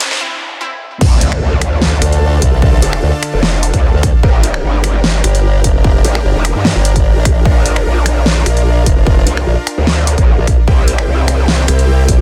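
The growl bass stands out in this chaotic, menacing stretch of heavy wobble dubstep: aggressive, saturated and distorted, it wobbles through a formant filter with chorus and overdrive, sitting up front from the drop at 1.0 seconds. A formant-sweep wobble bass built from pulse and sine waves joins at 2.0 seconds, adding its own chorused, overdriven wobble. The piece moves at 149 BPM in 4/4 with a half-time feel and light 16th-note swing, in D minor, tuned to A4 = 444 Hz. It opens with a short build-up: a drum fill, a riser and noise sweep, and a brief detuned sawtooth pluck with tape echo and a filter sweep, before the drop lands on an electronic impact. Huge, lush supersaw chords pump with sidechain throughout, moving from Dm to Gm, Bb and C, while a punchy layered kick and a big-room dance kit with a huge snare, finger snaps, hi-hat and crash drive hard. The dense, heavily limited master keeps the sound dry and close.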